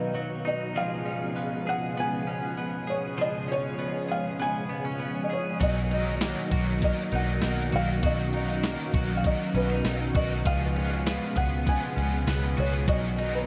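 Ethereal, floating dream pop in a reverb-soaked haze, where a mellow felt-muted upright piano carries the melody through tape echo over sustained sawtooth cello chords from a string machine and chorused, twangy twelve-string electric guitar arpeggios, before a crisp 8-bit drum machine with a thumpy kick and tambourine, a round foam-muted bass and a bright overdriven guitar with harmonic tremolo join at 5.6 seconds.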